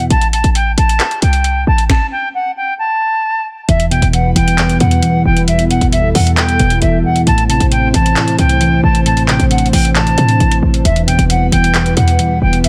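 A half-time trap groove at 134 BPM in E minor, with a knocking kick, sharp snare, handclaps and metallic hi-hats under a punchy, tight 808-style bass, carries this eerie, hard-hitting hip hop excerpt, where a pure, vibrato-laden silver concert flute sings the melody throughout, the beat drops out in a stop from 1.9 to 3.7 seconds, and at 3.7 seconds round, chorused electric-piano-like synth keys return and an airy, breathy pad of sustained chords joins over an Em-Am progression, all in light digital reverb with a dense, heavily limited modern master.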